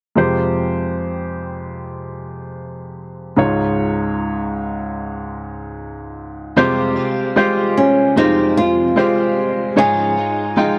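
A clear, polished baby grand piano sits up front in this melancholic, heartbroken pop excerpt in F minor, carrying the accompaniment from 0.2 seconds with chords moving between Fmadd9 and Dbadd9 at a slow 75 BPM in a straight 4/4. At 6.6 seconds a bright, clean electric guitar, recorded direct and compressed, enters with picked arpeggios treated with an ensemble chorus, sitting lower in the mix than the piano. A small, fingerpicked nylon-string guitar joins at 7.8 seconds with a warm acoustic melody, placed up front and slightly louder than the piano. The sound is dry and close, like a 1970s studio recording, touched by light reverb. Cut from a longer piece, the passage ends as all three parts play together on the return of Dbadd9.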